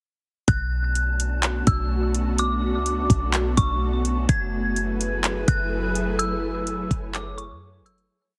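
A dry, heavily compressed radio-like sound frames this melancholic, hazy cloud-rap piece, where a half-time beat of knocking kick, handclaps and metallic hats with fast rolls sits up front beside a boomy, sine-like 808 bass with pitch slides, while an eerie, warbling FM bell repeats a looping melody through chorus and delay, an ethereal detuned pad holds sustained chords with sidechain pumping, and a breathy wind-like noise texture lingers in the background through the fade-out from 6.2 seconds.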